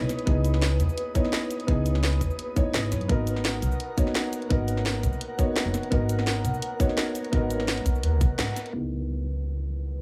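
Soulful and melancholic, this excerpt of liquid drum and bass at 170 BPM in C# minor sets a woody, dark pizzicato upright bass up front beneath a felt-muted upright piano, intimate and boxy with audible action noise and dub echo, while a glassy FM pad warbles with ensemble chorus and sidechain pumping over chords moving from C#m9 to G#m9. A layered garage kit of cabasa, hi-hat and cracking snare, all low-pass filtered, is joined by a tight electronic kick that enters at 0.3 seconds and drops out at 8.3 seconds. After a band accent at 8.4 seconds, a filter sweep carries the return to C#m9 at 8.7 seconds, with a faint downlifter closing the passage.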